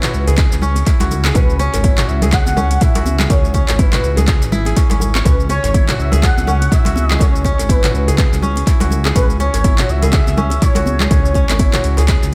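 An overdriven, layered electronic kick drives this driving, earthy afro house excerpt at 123 BPM in C# minor, entering at 0.4 s over a swung 16th-note feel and a C#m7 chord. A rumbling, detuned sawtooth bass with sidechain pumping sits beneath a crisp, fingerpicked kora playing ringing arpeggios with pumping and tape echo, while a deep house kit adds metallic hats, handclaps, shaker and toms with overdrive, studio reverb and echo. Close, dry congas and a cracking djembe stay in the background under a smooth, mellow lead melody with chorus, vibrato and portamento, all set in an echo-heavy digital ambience.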